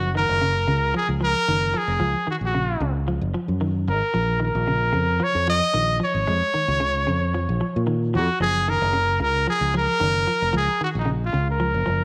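A funky, hypnotic afrobeat groove is under way from the first second, with trumpet, guitar and bass all sounding together at 0.0 s in a straight 4/4 at 112 BPM. A bright solo trumpet carries the melody up front, its pop-style tone shaded with vibrato as it moves between Eb4 and Eb5. Beneath it, a fingered electric bass sits forward in the mix with a dark, round and punchy sound, anchoring the low end from F1 to Bb2. A clean semi-hollow electric guitar picks arpeggios in a narrow middle range, its hollow-body tone sitting lower in the balance than the horn and bass. The harmony moves from Gbmaj7 to Bbm at 4.1 s and returns to Gbmaj7 at 8.4 s, while a moderate echo chamber reverb of about 1.5 s gives the studio sound a sense of space across this 12-second section cut from a longer piece.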